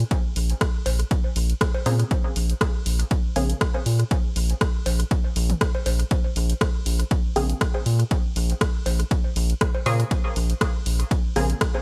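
Dub techno at 120 BPM in Bb minor, cavernous and hypnotic, with a lightly swung 16th feel and a digital ambience that leaves the whole mix heavy with echo. An up-front, round analog bass pumps under a punchy, overdriven kick, while a dry analog drum machine lays down hi-hat, ride and rim click through a small room and dub echo, and layered electronic cowbell and toms sit in the background. A muted, detuned sawtooth chord stab with 12-bit grit, chorus and phaser flickers in at 1.9 seconds and returns from 7.4 seconds, its filter pluck trailing into dub echo in this short excerpt cut from a longer piece.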